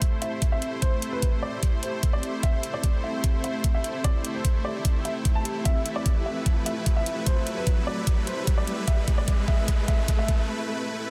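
Heavy wobble dubstep in A minor at 149 BPM with a half-time feel, this aggressive, menacing build-up sets a dark, intimate baby grand piano melody with audible action noise against a lush, detuned supersaw pad and an ethereal airy pad, both pumping to the sidechain, while an overdriven, knocking kick sits up front beneath metallic electronic hi-hats, a background riser enters at 2.7 seconds, a drum fill starts at 5.7 seconds, and a brief break arrives at 10.5 seconds in a dense, heavily limited mix with light reverb.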